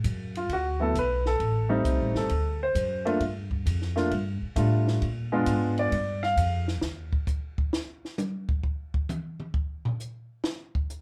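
Swinging and sophisticated, this short cut from a longer jazz piano trio performance moves at 133 BPM in 4/4 with a firm swing on the eighth notes. A grand piano carries the melody from 0.4 s to about 6.7 s, its tone warm and natural, over chords moving from D6 through Am7b5, D7 and G7 to a Bb7b9. Upright bass played pizzicato on gut strings gives a woody, thumpy low line until 7.1 s. The compact cocktail kit, dry and acoustic with dark cymbals, a high-tuned snare and a tight kick, runs the full 11.0 seconds, covering hi-hat, ride, snare, kick and toms, and takes a solo from 6.8 s once the harmony drops out. All three instruments sit up front, yet a moderate club reverb places the trio a little further back in the room.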